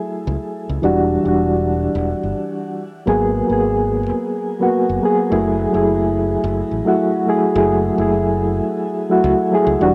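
Warm and smooth, this sunset chillout fragment at 107 BPM sets soft, round electric-piano-like synth keys up front, coloured by chorus, tremolo, cassette tape, tape echo and shimmer reverb, over a bright, direct fingered electric bass that enters at 0.3 seconds, moving through F#m9, Em9 and G#m9 chords before returning to F#m9 at 5.3 seconds, all in a small room with a homespun cassette character.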